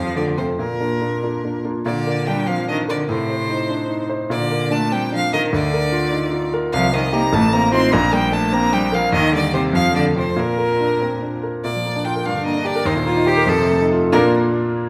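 A quick classical-period movement for piano trio in Bb major, this cheerful, graceful passage moves in 6/8 at 98 BPM with a rubato feel, and it is cut from a longer piece. The violin carries the melody with a clear, focused tone and vibrato, sounding distant yet up front, while the cello sings a smooth, even second line with a rich, close voice. The concert grand piano provides the accompaniment, its polished sound marked by deep bass and short sustain. The harmony circles around the home key, passing through a diminished chord and minor colors before a cadence settles on Bb at 14.1 seconds. The strings stop at 14.4 seconds, leaving the piano to sound alone until 14.9 seconds, all within a moderate scoring-stage reverb.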